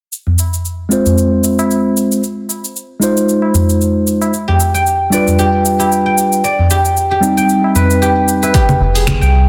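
Organic downtempo at 114 BPM with a lightly swung 4/4 feel and a mystical, hypnotic mood, built on a layered deep house kit of cabasa, congas, finger snaps and dark hats alongside ringing, high-tuned tabla, while a mellow tine electric piano pumps under the sidechain through low-pass filtering and delay across Fm, Ab6, G7 and Cm. A silvery, fingerpicked guzheng joins at 4.5 seconds with delayed arpeggios up front, and near the close a punchy electronic kick arrives at 8.5 seconds, followed by a deep, round sine sub bass at 8.8 seconds. A lush hall reverb and a dense, heavily limited master wrap this short cut from a longer piece.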